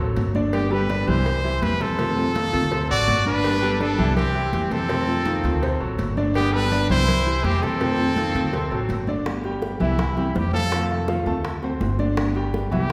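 Cuban son with a guajira lilt, relaxed and sunny at 165 BPM in G major, this excerpt sets a clear concert grand piano's arpeggios beside a woody, thumpy pizzicato upright bass up front, with fingerpicked nylon-string guitar, damped high-tuned congas and tight cowbell and bongos sitting in the background. A bright, close-miked trumpet with vibrato carries the melody from 0.5 seconds over a cycle of D7, Gadd9, C and F7 chords, joined by a distant, forceful second trumpet line from 2.9 to 9.1 seconds, before the lead takes a solo from 9.3 seconds over G, C, F7 and D7. The whole band sits in the wet reverb of a church or concert hall.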